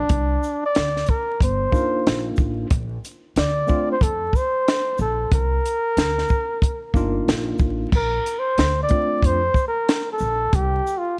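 Dry and close under a layer of vinyl crackle, this smooth, warm jazz-hop excerpt in Bb major rolls at 92 BPM with a swung 16th feel: a cocktail drum kit with a punchy kick, dark cymbals and a high-tuned snare sits up front beside a woody, growly pizzicato upright bass, a worn, slightly out-of-tune tine electric piano heard through its built-in speakers enters at 1.7 s with Cm11 and Bbmaj9 chords, and a breathy, mellow flugelhorn with vibrato and scooped notes carries the melody before taking a solo from 7.9 s.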